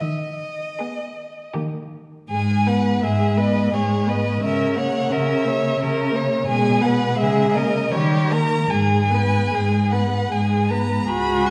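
Classical string quartet music in a slow, elegiac romantic movement, in 3/4 at 75-90 BPM with a rubato feel and set in G# minor, cut from a longer piece. A rich, bowed violin carries the expressive melody with vibrato and portamento over a soft-attacked cello bass that sits close and up front. At 0.8 s a second violin enters with a focused, smooth-topped inner line beside the warm viola's accompaniment. The solemn harmony passes through diminished and half-diminished chords to a dominant seventh before settling back on G# minor, and the quartet is heard from further back in a recital hall with a reverberant 1.7-second decay.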